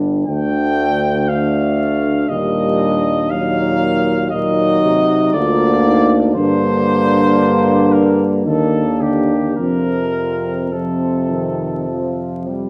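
A mellow cornet with light vibrato and a soft attack sings the melody up front in this serene, hymn-like classical excerpt for brass band in a rubato 3/4, over a tight French horn section on the second line, a dark, roomy trombone section, a distant euphonium in the background and a clear tuba bass, set in a moderate recital hall reverb with vinyl crackle in a dark, warm production.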